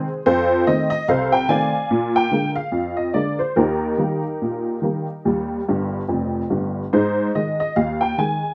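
The recording has a dark, warm production with a moderate studio reverb that gives the room a modest sense of space. A lone honky-tonk upright piano sits up front, its detuned, jangly tone carrying a woody, vintage character and an open ring that spans from deep bass notes to bright upper ones. The ragtime feel is lively and cheerful, with a swung lilt in two. The harmony moves through F7, Bb7 and Eb, and at 5.7 seconds the piano breaks into a short fill that lands on an Ab5 chord at 6.9 seconds. This brief passage is cut from a longer piece.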